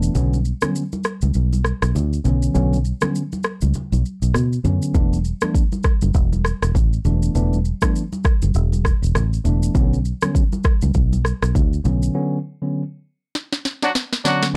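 A swung sixteenth-note groove in four drives this mellow, hypnotic afrobeats passage, cut from a longer piece, with an electronic-sounding drum kit of deep kick, sharp snare, rim click and shaker sitting up front. A round, foam-muted fingered electric bass with a dark, amped tone anchors the low end until 12.1 seconds, while hard-handed acoustic congas with a thick-skinned sound play along in the background. A clean, mellow tine electric piano carries the accompaniment through a Bmadd9 to E7sus4 and back to Bmadd9. Near the close the band hits an accent, a drum fill arrives at 13.3 seconds, and a clear, vintage pop-style horn section with light vibrato cuts in briefly at 13.8 seconds. The production is dark and warm, with little reverb.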